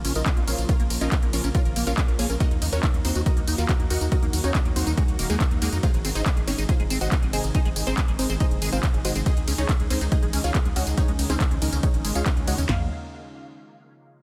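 A straight 4/4 pulse at 140 BPM drives this driving, emotional uplifting trance drop in Bb minor. A punchy, tape-warm analog drum machine kick and snare sit up front from 0.3 s, while an overdriven techno kit of handclaps, smooth hats, ride and tambourine pumps with the sidechain. A gritty, saturated synth bass anchors the low end, a squelchy, resonant acid bass arpeggiates through phaser and chorus in the background, and a lush, detuned unison pluck carries the melody with dub echo and a filter sweep over Bbm, Ebm, Ab and Dbsus2, all in digital ambience with a dense, heavily limited modern master.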